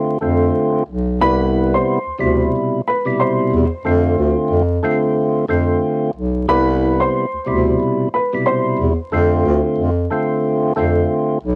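This boom-bap hip-hop groove sits at 91 BPM in 4/4, with a light 16th-note swing that gives it a warm, nostalgic feel. A percussive tonewheel organ carries the accompaniment from the start, its fat, clean tone marked by key click and third-harmonic percussion, turning through a slow rotary speaker and softened by cassette tape and filtering. A breathy bass clarinet holds the low end from 0.2 seconds, played close and up front in a mellow jazz style with subtone and light vibrato. At 1.2 seconds a dark upright piano takes the melody until 8.8 seconds, its woody, slightly detuned voice carrying audible action noise and a touch of analog delay. The harmony moves between F6 and Cmaj7, and the whole short fragment, cut from a longer piece, has a dry, intimate home-cassette sound with vinyl crackle and a dulled top end.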